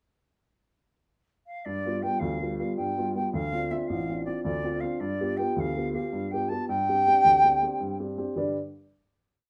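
An airy, bright wooden flute with tongued notes and gentle vibrato enters at 1.5 s to carry an expressive, motif-built melody in balanced phrases over a dark, mellow upright piano that joins at 1.7 s with oompah bass notes and chord figures, making a lively, rollicking Celtic slip jig in 9/8 at 107 BPM in G mixolydian that moves through G7, Dm7 and Gsus4 before settling on a final G chord, set in a small room's moderate reverb.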